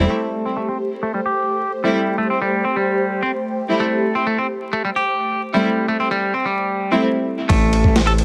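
Funky and energetic, this breakbeat cut from a longer piece rides a straight 4/4 groove over an Am7 chord. A swirling phased analog pad holds sustained chords throughout, thickened with chorus and pumping against a sidechain, while a bright chamber string section fires off bowed, earthy stabs coloured by vintage 12-bit sampler grit and tape echo until 7.0 seconds. A clean, twangy electric guitar picks a riff through a low-pass filter and tape echo, its filter sweeping across most of the passage. A fat, detuned analog bass sounds only in a brief blip at the start and returns at 7.5 seconds. It arrives alongside a dusty soul sampler-style drum kit with a thumpy kick, medium-tuned snare and ride cymbal, overdriven and gritty, all set in light reverb with a bed of vinyl crackle.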